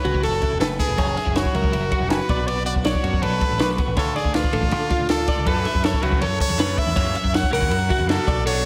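A brilliant, forceful trumpet with vibrato and slapback echo leads this bright, wistful math rock and midwest emo fragment from the start. Beneath it sit two clean, compressed twelve-string electric guitars: one picks the accompaniment through tremolo, and the other plays twangy arpeggios in the background with a vibrato effect and digital delay. A dry cocktail kit with a punchy kick, high-tuned snare and dark ride cymbal, plus a growling overdriven bass from 0.1 seconds, carry the F#m7, Bm7 and Dm changes, while a very quiet, raw, double-tracked garage guitar riff enters at 5.5 seconds, all inside a lush hall reverb for a big arena sound.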